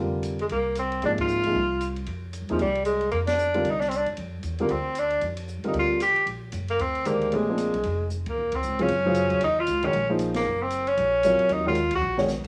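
A brisk swung 4/4 drives this searching, intense modal jazz passage, cut from a longer piece, with a woody, dark pizzicato upright bass underneath and an open acoustic drum kit of dark cymbals, a high-tuned snare and a boomy kick that carries a cassette-tape grain. Up front, a punchy, forceful tenor saxophone sings the solo melody with vibrato and a roomy plate-reverb glow, while a warm, natural baby grand piano, also tinted by cassette tape, comps beneath it. Sharp band accents punctuate the line, a drum fill at 8.1 s ushers in a shift to new harmony at 8.4 s, and another fill arrives at 12.0 s in this home cassette recording.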